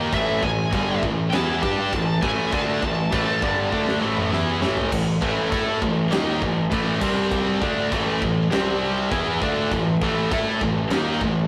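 Dark and relentless, this heavy metal excerpt stacks a double-tracked high-gain guitar, a scooped guitar and a tight distorted guitar, all three in the background, riffing on A5 and C5 chords over a growly fuzz bass, while a shadowy lead guitar melody sits on top until 4.3 seconds, a big acoustic drum kit with a fat snare and punchy kick plays a fill from 3.7 to 4.9 seconds, and the whole mix has a rough rehearsal-room feel in a stone room.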